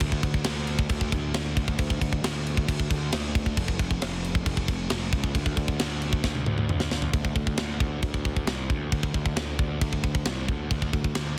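Relentless and dark, this heavy metal excerpt drives ahead at 135 BPM in a straight 4/4, clipped from a longer piece. A picked electric bass runs through overdrive and fuzz, giving it a bright, growly edge that sits up front, moving between E#1 and D2. An acoustic metal drum kit with a tight kick and a medium-tuned snare shares the foreground, its mid-forward tone and big-room character carrying crash, splash and tom hits. A drum fill from 6.2 to 7.1 seconds leads into a new section that runs to the close. The mix is dry and the master dense and heavily limited.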